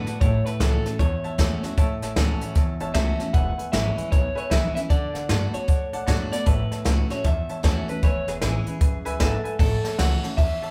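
Swung eighths drive this rollicking, upbeat rockabilly excerpt, where a twangy, slightly broken-up electric guitar carries the melody over a full-bodied picked steel-string acoustic guitar, an open-sounding upright piano that slips in a fill from 8.8 to 9.6 seconds, a thumpy pizzicato gut-string upright bass, and an up-front brushed drum kit with a boomy kick and dark cymbals, all caught with light reverb as a band playing live in one room.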